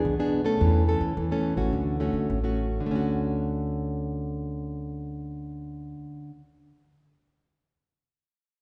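A fingerpicked nylon-string guitar sits up front in this short, lively samba cut from a longer piece, playing dark, classical-toned accompaniment in D major at 107 BPM, moving from a rootless E7 through A/E to Dmaj7. Beneath it, a pizzicato upright bass on gut strings adds a woody, thumpy low end until about 5.9 seconds, while the guitar carries on to 6.5 seconds. The playful duo is bathed in a lush 1.7-second reverb that evokes a church or concert hall, with a soft, rounded top end.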